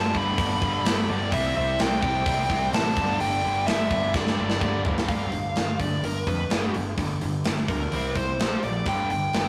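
Swaggering and powerful, this hard rock excerpt in G mixolydian drives at 127 BPM as a dark, smooth overdriven lead guitar carries the melody over three picked distorted rhythm guitars, the sludgy double-tracked one dropping out at 4.8 seconds, while a punchy fuzz bass and an up-front, big-room metal kit with a tight kick fill from 4.1 seconds into a lead solo at 5.1 seconds, all captured in a rough rehearsal-room recording with saturated character and moderate reverb.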